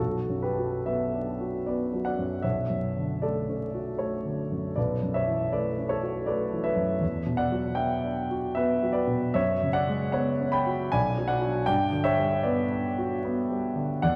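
Set in a deep, wet church reverb with vinyl crackle, this mysterious, wistful impressionist solo piano excerpt in B minor drifts at 78 BPM in a rubato 3/4, its warm, present grand piano sitting up front with long sustain as it moves from Bm through Dmaj9/B, Em9 and F#sus24 to Bm6 and Gmaj7 across 14.2 seconds.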